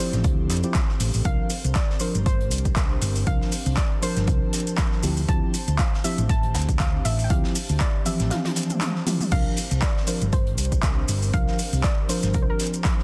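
Riding a swung 119 BPM pulse, this smooth, hypnotic deep house cut pairs a punchy overdriven electronic kick and a dark, round hollow-body electric bass up front with an overdriven house kit of metallic hats, claps, toms and crash (with a drum fill at 8.3 seconds). Around them sit a small-room acoustic snare and hats, grainy maracas, mellow tine electric piano stabs with vintage sampler grit, a soft round chorused pluck melody with tape echo and an airy, breathy background pad. The piano, pad and acoustic hats pump to the sidechain over a slow Dm11 to C9sus4 sway in a dense, dry, heavily limited mix.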